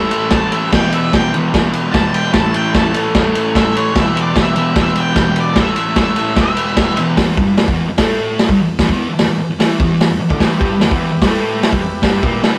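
Raw and gritty, this clip of garage rock in straight 4/4 moves with a driving, rough-edged energy. A thick fuzz guitar, double-tracked and up front, carries a dark, picked riff across the whole clip, while a vintage acoustic drum kit with a punchy kick, medium-tuned snare, hi-hat, ride and dusky crash cymbals sits mid-forward with a rolled-off top. Over the opening harmony, which rocks between A and E minor, an octave-fuzz lead guitar plays a distorted, picked melody until 7.0 seconds. Tucked in the background, a buzzy combo organ holds clean, sustained chords with light vibrato, dropping out at 7.2 seconds and returning at 10.4 seconds for the tail of the second section. The whole take has the loose feel of a rehearsal room, with light reverb and a warm, saturated glow.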